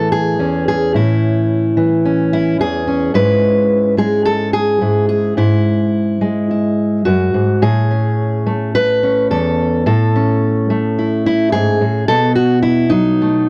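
A dry, close recording with a touch of light reverb and a 1970s studio character frames this short folk excerpt, cut from a longer piece, for solo fingerpicked steel-string acoustic guitar. The guitar sits up front with a dark, auditorium-bodied tone, moving at a straight 108 BPM in 4/4 through Amaj7, E6/G#, back to Amaj7 and onto B7 at 12.1 seconds. The mood is peaceful and nostalgic, with the single guitar carrying the whole 13.5 seconds from low E2 up to B4.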